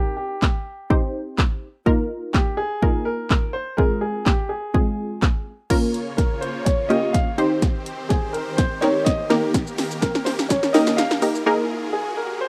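Bittersweet yet driving, this dance-pop passage in Bb dorian moves at 125 BPM in a straight 4/4, with a polished baby grand piano carrying the melody over detuned sawtooth chord stabs that pump against the sidechain and a dry analog drum machine hitting with punchy kick, snare, handclaps, hi-hat, shaker and crash. At 5.7 seconds a build-up begins, bringing a drum fill, a filter sweep and lush, bright supersaw chords with a sub-octave weight underneath, while a very quiet electronic riser creeps in at 8.5 seconds. The drums drop out for a short break at 11.5 seconds on an Absus2 chord, all within a rough home-demo mix touched by light reverb.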